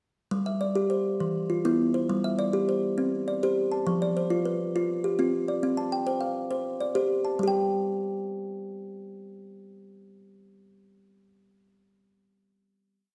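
A solo kalimba, woody and ringing with a hollow-box body, plays a rippling, hypnotic interlocking ostinato in the Southern African mbira tradition, its thumb-plucked notes set up front in a steady, straight 12/8 cycle. The pattern moves over a few plain chords until a final note arrives at 7.4 seconds and lingers until 10.9 seconds, carried by a wet recital-hall reverb that keeps the short piece glowing.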